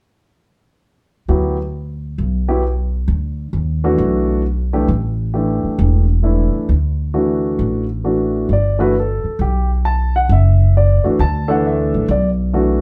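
A swung 4/4 pulse at 133 BPM, with the eighth notes swung at 67%, drives this playful jazz excerpt in G major, cut from a longer piece. Grand piano and upright bass both enter at 1.3 seconds and play together through to 12.8 seconds, the piano carrying the melody from E3 to A5 while the bass holds the low end from E1 to Eb2. The piano sounds intimate and natural, with long sustain and audible action noise, and it sits up front. The pizzicato bass has a woody, growly, thumpy steel-string tone and is also up front, slightly louder than the piano. The harmony moves from a rootless Gmaj7 through A5 and Dadd9, then shifts at 8.5 seconds into a new section built on Gadd9, F#m7b13 and Bm7. A moderate studio reverb places the listener further back in the room, giving the duo a warm glow.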